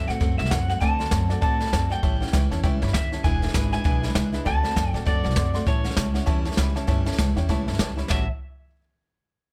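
Rockabilly at a brisk 198 BPM in A mixolydian, this upbeat, retro clip from a longer piece swings its eighth notes over a 4/4 pulse. The melody comes from an electric guitar through a small old amp, bright, twangy and slightly broken-up, with a lo-fi edge and tape echo trailing its picked notes. Beneath it, a picked steel-string acoustic guitar adds bright accompaniment, while a pizzicato upright bass with gut strings gives a woody, thumpy low end. A jazz brush drum kit sits up front, mixing an airy, polished small-room sound with dark cymbals, a medium-tuned snare and a boomy kick across hi-hat, ride, snare and kick. A warm upright piano joins at 0.8 seconds, tucked low in the mix, as the harmony moves through D7, A7 and E7 before settling on A at 8.1 seconds. The whole band sounds dry, with little reverb.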